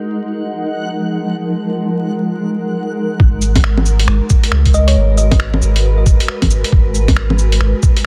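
Future garage with a wistful, ghostly air, this excerpt opens on a blurred, granular cloud pad carrying 12-bit sampler grit and sidechain pumping, beside a reversed, swelling texture that is dreamy and bright. At 3.2 seconds a round sine sub bass arrives up front with a thumpy, pitched-down kick, and a muffled, tape-toned sampler kit of bongos, cabasa, finger snaps and hi-hat follows, its snare softly clipped and filtered. A brief, tine-like FM pluck with chorus and digital delay sounds near 4.7 seconds, all within a dense, heavily limited master dusted with vinyl crackle.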